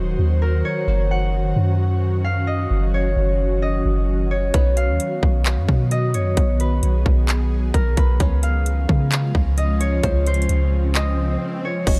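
Dreamy and floating, this atmospheric cloud-rap excerpt moves at 131 BPM in a half-time 4/4 feel in Db major, drifting through Ebm7, Gb6, Cb and Dbmaj7. A concert harp carries the melody with a ringing, fingerpicked tone, softened by a low-pass filter and trailed by tape echo, while an ethereal, airy pad holds sustained chords beneath it, its detuned unison layers and noise wash spread by ensemble chorus and reverb and pumped by sidechain. A deep, round 808-style bass sits up front from the start, and a twangy, plunky open-back banjo adds fingerpicked texture in the background. At 4.5 seconds a trap drum kit enters up front with a hard-clipped kick, metallic hi-hats, handclaps and crash cymbal. Near the close an electronic swell rises in the background from 10.7 seconds, leading into a brief break at 11.4 seconds, all set in a digital ambience.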